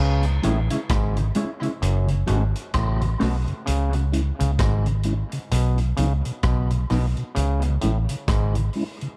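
A muted, round fingered bass sits up front from the start alongside an overdriven auto-wah clav riff with a stringy, percussive bite and tape echo, in this meditative, heavy dub reggae excerpt at 65 BPM in C# minor with a swung sixteenth feel. A soft, flute-like tonewheel organ with chorus vibrato and audible key click hangs in the background, while a vintage kit of hi-hat, punchy kick and rim click keeps time with a rolled-off top. A clean, compressed electric guitar adds echoing fingered accompaniment only until 3.3 seconds, and the whole piece carries a dark, warm studio sound as the chords move from C#m to F#m before settling on bare C# fifths.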